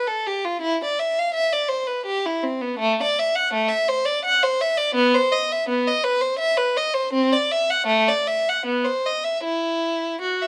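A lone bowed violin fills this short passage, its rich tone shaped by vibrato and held close and up front in the sound. The music is classical, a baroque-style suite movement for unaccompanied violin, introspective and grave in mood. It moves in 3/4 at about 82 BPM, but the beats are uneven and the rubato lets the single player stretch and ease the pulse. The line ranges from A3 to F#5, and the instrument is tuned to A4 = 441 Hz. Detailed, intimate miking captures a focused sound with light reverb across the 10.5 seconds, which are cut from a longer piece.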